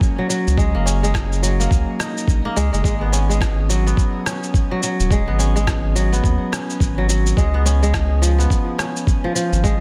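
A crisp, ringing kora plays fingerpicked arpeggios up front, trailed by digital delay and a shimmer reverb, in this warm, hypnotic organic downtempo piece, cut from a longer work, with a swung 4/4 feel. A thumpy, gritty electronic kick and a sampler-style cabasa and rim click, whose snare carries soft clipping, play from the start with a compressed, tape-warm character, and a deep, dark analog bass with sidechain pumping enters at 0.5 s. The harmony moves from F#add9 to G#m7 and then to C# at 7.4 s, all set in light reverb under a dense, heavily limited modern master.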